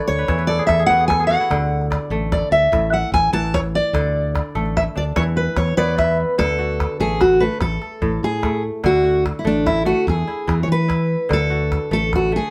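A fingerpicked steel-string acoustic guitar sits up front with finger squeak audible, carrying the melody and taking a solo through the first 6.4 seconds of this hypnotic, joyful West African string and xylophone piece in 12/8 at 98 BPM in D lydian. A ringing, crisp kora opens with a fill and keeps up arpeggios, a bright, direct fingered electric bass holds the low end, and a deep calabash supplies percussion. The band plays live in one room with light reverb, and the harmony moves among D, E and A across the two sections, with a chordless moment at 7.6 seconds.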